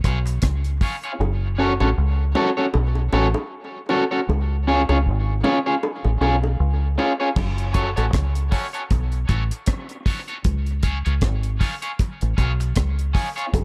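Dub reggae at 78 BPM with a swung, hypnotic and heavy feel, this excerpt rides a round, punchy, foam-muted fingered bass up front beneath a twangy, slightly broken-up picked electric guitar soaked in high-passed tape echo, while high-tuned vintage bongos sit band-limited in the background and the dry drum kit with its tight kick and dark cymbals drops out at 1.2 seconds before returning at 7.4 seconds, as a filter sweep runs from 4.3 seconds over the C# and F#m changes in a lightly reverberant studio space.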